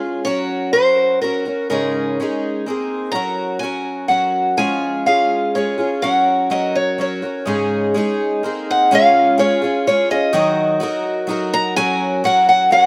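Acoustic folk in a straight 3/4 at 125 BPM in Db major, pastoral and hopeful, this short excerpt pairs a shimmering, octave-doubled twelve-string guitar picking the accompaniment from the start with a dark, boxy, woody ladder-braced guitar on old strings carrying the melody from 0.2 seconds, both up front with a slapback echo in a dry outdoor setting, as the chords move through Gb, Absus4 and Abadd9 before shifting to Db, Ebm and Gb at 8.9 seconds.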